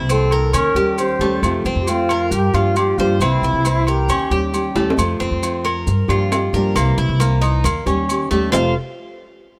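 Relaxed and warm, this short cut from a Cuban son and guajira piece in F major moves at 135 BPM in a straight 4/4, with a fingerpicked nylon-string guitar and a mellow, metallic tres on doubled strings cycling through C7, Eb7, F and Gm7 over a woody, thumpy upright bass set up front, while a bright, reedy alto flute with vibrato and slapback echo carries a distant melody until 4.5 seconds, ringing agogo bells and timbales add a fill at 4.8 seconds, and grainy maracas sit in the background under light reverb.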